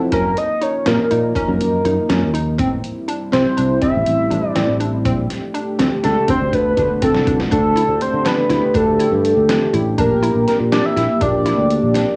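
Progressive instrumental band music in an uneven 5/8 metre, this short cut from a longer piece feels driving and bright, with a straight feel and a homemade cassette sound in a small, lightly reverberant room. A shimmering pulse-width lead carries the melody up front, its retro tone given chorus, vibrato and analog delay, while a glassy wavetable pluck spins crystalline, warbling arpeggios with a fast attack and short decay. Underneath, a deep, moody analog pad sustains slow-blooming chords through chorus and tape grit, and a fingered electric bass sits up front with a growly, amped tone. A trip hop sampler-style drum kit, compressed and pitched down, supplies a thumpy kick, medium-tuned snare and hi-hat, with a drum fill from 6.5 to 7.5 seconds leading into a second section at 7.5 seconds. The harmony moves from F# through Am, Bbmaj7 and D before settling on Dsus4 and Bb.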